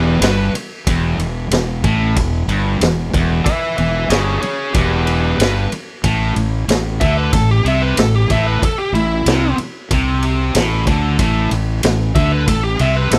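A straight 4/4 groove at 93 BPM drives this raunchy, swaggering blues rock and southern rock power-trio excerpt, where a biting, overdriven lead guitar with slapback echo carries the melody over a bright, double-tracked distorted guitar riff, a growly fuzz fingered bass, and a raw garage drum kit with a boomy kick, gritty ride cymbal and medium-tuned snare that enters at 0.2 seconds, all captured in a dry, close 1970s-style small room as the chords move from E5 to A5 at 6.0 seconds.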